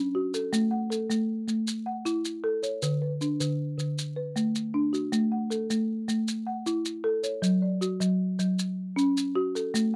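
Rippling and hypnotic, this short cut of southern African traditional music moves in a 12/8 mbira-style interlocking cycle at 104 BPM, centred on A major. A woody, boxy folk marimba with hardwood bars sits up front, spinning rustic arpeggios from D3 to F#5 through F#m, A5, D5 and F#5, while grainy, mellow maracas sit close behind from 0.3 seconds. The dry, close 1970s-style studio sound has little reverb.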